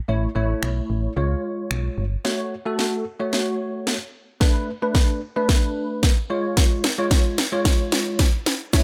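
A bell-like, chorused tine electric piano pumping through the chords and a round, dark FM bass open this energetic, confident dance-pop excerpt at 111 BPM in F# minor. At 0.6 seconds they are joined by a punchy, layered house drum kit of kick, cracking snare, hi-hat, finger snaps and shaker that drives the groove. The bass drops out at 2.2 seconds as a drum fill builds up over F#m, Bm7 and C# in a dry, up-front mix.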